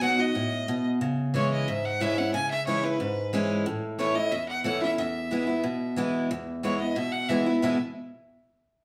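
Bathed in a wet, large-room reverb that captures a band playing live together, this short cut from a longer bluegrass piece in E major moves at a lively, rustic 181 BPM, with a clear, focused bowed fiddle carrying the melody with light vibrato over a warm, up-front picked steel-string acoustic guitar moving from B through C#m and A to E.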